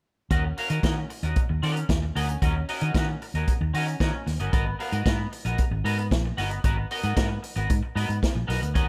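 From 0.3 s, a foam-muted fingered electric bass sits up front with a punchy, amped tone alongside a vintage acoustic drum kit whose medium-tuned snare, punchy kick and hi-hat carry a rolled-off top and the natural sound of a small room. A bright, clean semi-hollow electric guitar plays picked accompaniment through analog chorus, moving from D#m7 to G#m9 at 4.5 s. This glamorous, celebratory disco excerpt in straight 4/4 is cut from a longer piece, with studio reverb around it.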